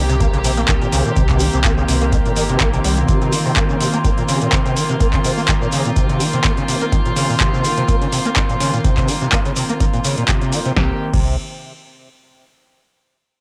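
Cut from a longer piece, this home cassette recording carries light reverb and a digital ambience, giving a trippy, hypnotic acid house groove at 125 BPM in C phrygian with a slight swing on the sixteenths. A squelchy, gritty, distorted sawtooth acid bass riff with a resonant filter sweep and tape echo pumps beneath a rich chamber string section of reedy, gut-string bowed chords with light vibrato holding a Cm7. An up-front deep kick, a tape-coloured analog drum machine with punchy snare, metallic hats, handclaps and crash, and a grainy shekere in the background drive the beat, while a round sine sub bass sounds until 3.0 seconds and returns at 10.8 seconds as the harmony drops out.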